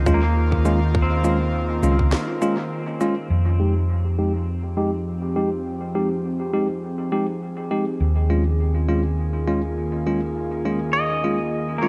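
An airy, breathy pad with a soft chorus shimmer opens this spacious, meditative ambient dub fragment. A clean pedal steel guitar plays arpeggios through dub echo, and a round, dark hollow-body bass sits up front with tube saturation. A bell-like tine electric piano adds bright stabs through a low-pass filter and echo, while a tight electronic kick stays in the background only until a break at 2.1 seconds. An electronic shaker and a woody snare, filtered, echoed and re-recorded in a large room, carry a gently swung pulse throughout. At 3.3 seconds the harmony moves from Eb9sus4 to Fm9 as filter sweeps pass over the pad and electric piano, and shortly after, the pedal steel falls away until its return at 10.9 seconds. A moderate recital-hall reverb with digital ambience surrounds the whole mix.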